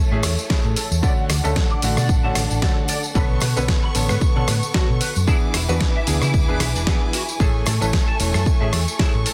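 A swung sixteenth-note groove in 4/4 drives this groovy, sunny nu-disco fragment, cut from a longer piece. A punchy, layered electronic kick sits up front from 0.5 seconds, under a gritty, compressed sampler-style kit of hi-hat, rim click, fat snare and tambourine, with a separate, very quiet tambourine heard distantly as if in a large room. A dark, round hollow-body fingered bass carries the low end with tube saturation. A brilliant baby grand piano plays short-sustain accompaniment with sidechain pumping and tape echo, while a close studio violin section holds expressive bowed chords with vibrato and portamento, also pumping. In the background, a twangy, slightly broken-up electric guitar riff passes through ensemble chorus, a low-pass filter and tape echo. Over light reverb and a dense, heavily limited master, the harmony moves from Amaj7 through Dmaj7, Bm9 and E7 before returning to Amaj7 at 7.4 seconds.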